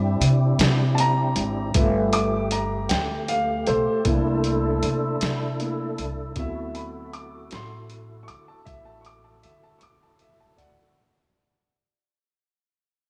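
An upright piano takes the solo throughout this gritty, rollicking slow blues in 12/8, its intimate, boxy tone carrying audible action noise and a slapback echo. Beneath it, a fat tonewheel organ holds sustained chords, lightly overdriven with chorus vibrato, key click and a slow rotary speaker. An upright bass sits up front, plucked on gut strings with a dark, woody sound. Sampler-style boom bap drums enter at 0.2 seconds with hi-hat, a thumpy kick and a medium-tuned snare, sounding compressed, pitched down and tape-warm after being re-recorded in a small room. The harmony moves through rich extended chords such as C9, G13 and D13, all set in a moderate concert hall reverb that lends an arena-sized sense of space. Cut from a longer piece, the passage fades out across its length, with a break arriving at 9.8 seconds.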